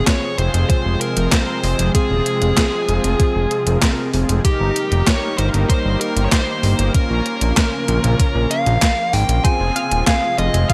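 Bright 1980s-style digital production with light reverb frames this moody, cinematic synthwave excerpt in F minor at 96 BPM, where a dark, overdriven electric lead guitar carries the melody up front over a fat, detuned sawtooth analog bass, a thumpy overdriven electronic kick, and a 12-bit drum machine with handclaps, hi-hat and a medium-tuned snare, while a lush unison pad with sidechain pumping holds chords in the background, round synth brass adds chorused stabs with vibrato, and a delayed analog pluck joins with arpeggios at 9.4 seconds as the chords move from Fm through Eb and Bbm back to Fm.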